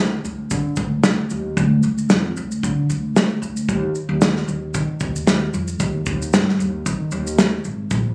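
This short excerpt has the roomy, compressed sound of a phone capturing a live performance, with moderate club reverb giving the space a snug, lived-in feel. It's acoustic pop in Eb major at 114 BPM in 4/4, with a light swing on the sixteenths that keeps the carefree, heartfelt mood easygoing. An upright bass opens at 0.0 seconds, played pizzicato on steel strings with a woody, bright tone, sitting up front and ranging from Ab1 to Eb3. A loose indie drum kit joins at 0.2 seconds, with a tight kick, a medium-tuned snare and a shaker, sounding small-room and warm with a rolled-off top, also placed up front. The two parts carry the groove together until the drums drop out at 8.0 seconds and the bass stops at 8.1 seconds, a fragment cut from a longer piece.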